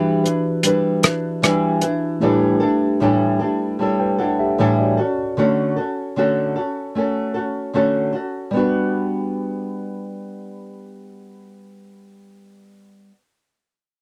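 A mellow tine electric piano and a dark, fingerpicked nylon-string guitar open this nostalgic, hazy bedroom pop excerpt at 76 BPM in G lydian, moving through Em7, A7sus4 and Dmaj7 before settling on Gmaj7. A cloth-damped, thuddy drum kit with hi-hat and rim click sits up front only from 0.3 to 2.0 seconds, and once the piano drops out at 5.4 seconds the small, close guitar, touched with subtle chorus and vibrato, carries on alone. The sound is dry and intimate in the manner of a 1970s studio, with light reverb.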